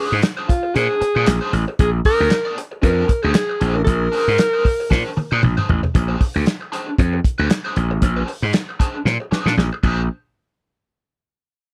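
A breathy alto saxophone opens this strutting funk excerpt at 116 BPM in Bb mixolydian, playing a smooth-topped solo melody with light vibrato over a Bb9 chord. Underneath, a raw garage guitar plays picked accompaniment through wah, overdrive and tremolo. A gritty slap bass, bright, growly and punchy, sits up front beside a soul drum kit with a tight kick, medium-tuned snare, dark cymbals, handclaps and toms, the sixteenths carrying a light swing. The saxophone stops at 5.4 seconds, leaving guitar, bass and drums, and a drum fill at 9.1 seconds marks the next turn before the chords give way at 10.1 seconds. The sound is dry and close, in the manner of a 1970s studio recording.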